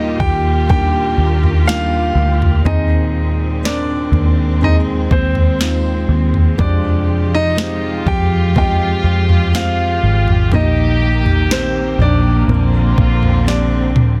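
A dense, heavily limited modern master with small room ambience carries this heartfelt pop ballad excerpt in Eb major at 61 BPM, moving from Ebmaj7 through Fmadd9 to Bbadd9. A clear, polished concert grand piano sings the melody over a felt-muted upright piano with a boxy, mellow tone and audible action noise, while a smooth studio string section holds bowed chords with vibrato and a round, punchy fingered electric bass sits up front. An electronic R&B drum kit with soft kick, sharp snare and overdrive enters at 0.2 s and plays a drum fill from 13.5 s, and a stopped, nasal French horn section adds a second line from 6.6 s.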